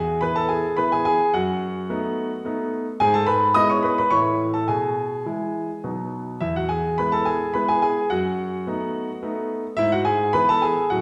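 Graceful and cheerful, this short passage from a classical-period piano sonatina moves at 107 BPM in a straight 3/4 in E major, tuned to A4 = 441 Hz. A clear grand piano plays solo from 0.0 to 11.0 seconds, spanning E2 to D#6, and its tone is intimate and natural, with audible action noise and an up-front presence. The harmony circles home through E, B7 over F#, E over G#, A and E over B, reaching a B chord at 5.8 seconds before settling back on E at 6.4 seconds. A wet recital hall reverb of about 1.5 seconds surrounds the playing, and the listener seems placed further back in the room. The passage is cut from a longer piece and breaks off on E over G#.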